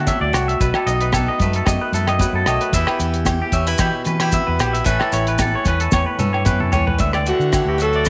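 Highlife guitar band music with a warm, carefree mood in a straight 4/4 groove, heard as a short cut from a longer piece. A bright, twangy clean electric guitar plays arpeggios up front with slapback echo, while a boxy, picked swing-style acoustic guitar, finger squeak audible, plays the accompaniment and a round, amped fingered electric bass holds the low end. A cloth-damped, thuddy drum kit with a fat snare, tight kick, rim clicks, hi-hat and toms sounds dry and dark with a rolled-off top, and it plays a fill from 5.9 to 7.0 seconds. Grainy, mellow maracas join in, while ringing agogo bells and high-tuned, thin-skinned congas heard from a distance sit in the background. At 7.3 seconds a mellow, subtoned alto saxophone steps up front with scooped notes in a jazz style, joined by a whispered tenor saxophone carrying a second line with light vibrato, all in a light reverb over chords moving from Dadd9 through B7, Em and Aadd9 and back to Dadd9.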